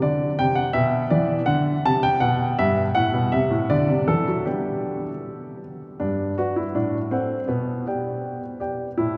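A straight, even pulse in two gives this classical-period sonatina a playful, elegant poise. A solo baby grand piano carries it alone, its warm, natural tone sitting up front with short sustain across a range from G2 to A5, moving from Csus2 through D and Em/B toward a settled G chord at 4.5 seconds before the opening phrase returns at 6.0 seconds. A wet cathedral reverb with a 5.0-second decay surrounds the playing in a church or concert-hall space, and the passage is cut from a longer piece.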